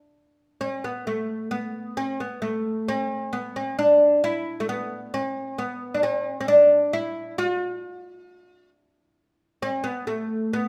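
Warm and passionate, this brief Arabic excerpt sets a solo oud, bright and woody with its plectrum-plucked, fretless double strings heard up front, playing from 0.6 to 10.7 seconds in a straight 10/8 at 133 beats per minute counted in eighths, tuned to A4 = 441 Hz and carried by a moderate recital-hall reverb.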